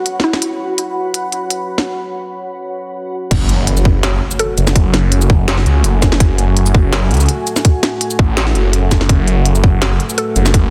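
A deep, moody ambient pad in F# minor opens this dark, cinematic half-time drum and bass excerpt at 166 BPM, joined by a reversed, dreamy swelling texture in the background, woody mallet-like plucks, and an industrial kit of clanging snare and crisp hats carrying a filter sweep through a short break. At 3.3 seconds the drop lands with a very quiet electronic impact, a tight overdriven kick and a swirling, thick phased saw bass up front, while the pad pumps against the kick under an F#madd9 chord. The pluck's chorus and delay give it a warbling, vintage colour against the dense, heavily limited master and light digital ambience.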